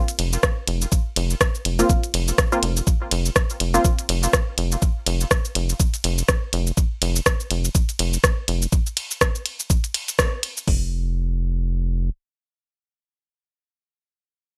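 Cool and sparse, this minimal techno excerpt at 123 BPM with a 16th-note swing sets clicky hats, ride, rim clicks and shaker from a minimal click kit against a garage kit's knocking kick and metallic hats, while a rubbery, nasal square bass pumps low on F1 through 12.1 seconds and a muted, detuned dub chord stab with chorus and delay flickers from 1.8 to 3.8 seconds, all in light reverb, with a band accent at 10.2 seconds before the drums stop at 10.8 seconds.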